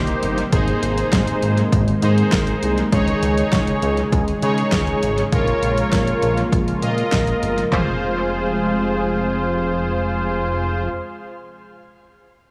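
A straight 4/4 groove at 100 BPM drives this nocturnal, cool synth-pop passage in F minor, with an overdriven, up-front deep house drum kit of punchy kick, fat snare, handclaps, hi-hat and toms that runs until 7.9 seconds. Bold, brassy analog synth brass carries the accompaniment with a detuned, warbling edge, chorus, analog delay and shimmer reverb, while a lush unison pad holds slow-attack sustained chords and a glossy, retro chorused synth bass adds pulse-width and filter-sweep movement beneath. The chords move from Cm7 through Abadd9, Dbsus2 and Bbm7 before settling on Fm as a new section begins at 7.7 seconds, in an echo-heavy mix with a moderate spring reverb.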